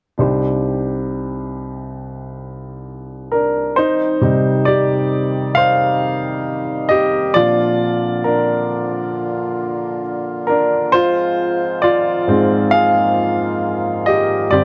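A polished, up-front baby grand piano leads this emotional, heartbroken pop ballad fragment, opening at 0.2 seconds and taking a solo from 3.8 seconds, as a distant, mellow French horn section enters with sustained classical-style chords over a Cmadd9, Bbadd9 and Fm/Ab progression in a space with light reverb.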